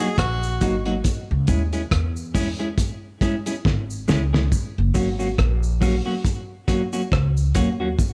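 Laid-back and sunny, this roots reggae excerpt moves at 69 BPM in F# mixolydian with a swung sixteenth feel, shifting from D#m and C#m to F# at 4.5 seconds after a drum fill. A breathy, whispered tenor saxophone with scooped notes and tape echo plays a brief second line that ends at 0.8 seconds. Up front are a bright, twangy clean electric guitar with spring reverb and tape echo, a woody pizzicato upright bass, and a cloth-damped, muffled, gritty drum kit with a fat snare and tight kick, while a distant cabasa enters at 0.4 seconds under a light reverb.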